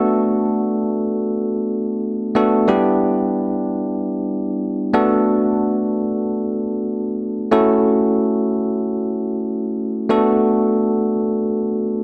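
Pop in free time and B minor, this nostalgic, moody fragment of a longer piece features a solo tine electric piano playing alone from 0.0 to 12.0 s in a range from G3 to A4. Its tone is bell-like, bright and clean, sitting up front in a lush hall reverb of moderate depth. The harmony moves from Bm7 to Em7, back to Bm7, then to F#m7/A before settling on Bm7 again.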